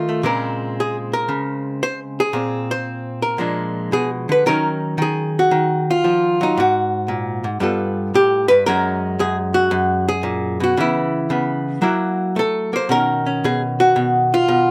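Loosely swung eighths in four with a rubato sway carry this late-night solo jazz excerpt, where a clean, picked, compressed hollow-body archtop guitar sits up front in light reverb, moving through rich extended chords such as Bbm9, Gbadd9 and a closing Bmaj9#11 as the harmony shifts at 4.5 seconds.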